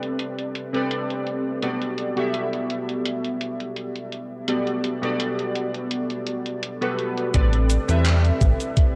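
Vaporwave in G major at 84 BPM with a slight swing, this short excerpt from a longer piece feels faded and dreamy, its cassette-tape sound bathed in light reverb. Warbling, lo-fi synth keys sit up front from the start, their detuned, nostalgic tone colored by ring modulation, a sub octave, analog chorus and tape echo as they move from Am11 to Gmaj9. Beneath them a gated 80s digital drum machine plays cabasa, handclaps and hi-hat at a low level, its sampler-style hits muffled by low-pass filtering and given a gated reverb and tape-warm character from a small room. At 7.3 seconds the chords return to Am11 and the groove fills out: a thumpy electronic kick, re-recorded in a large room, lands up front alongside a dark, glossy chorused synth bass with a detuned pulse-and-sawtooth sound and a filter sweep. The bass drops out at 8.5 seconds, shortly before the piece is cut off.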